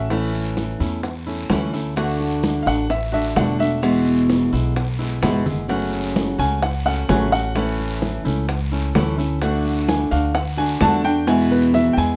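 A concert grand piano with a clear, worn tone and short sustain takes the solo throughout, spinning high arpeggios over a danceable, warm Cuban son and guajira groove in A major at 129 BPM, moving through A, D, E and F#m. Up front, a fingerpicked flamenco guitar with fresh strings carries the accompaniment beside a woody, dark pizzicato upright bass on gut strings. Bright, thin-skinned congas and round, low-tuned bongos sit in the background, with a drum fill at 5.2 s, while grainy maracas sit close and a raspy guiro sounds distant, all in a wet studio reverb with a rough home-demo feel in this cut from a longer piece.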